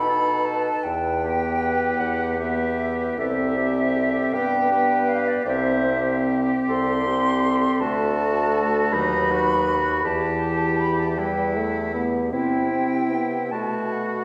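A yearning, elegiac classical movement for wind quintet in E minor unfolds at once in a slow, rubato 6/8 at 52 BPM: a pure, softly attacked silver flute sings the melody with vibrato over a clear, close oboe second line, while a dark, distant clarinet and a warm French horn fill in the accompaniment and a bassoon with light vibrato carries the bass, the quintet heard from further back in a wet scoring-stage reverb in this passage cut from a longer piece.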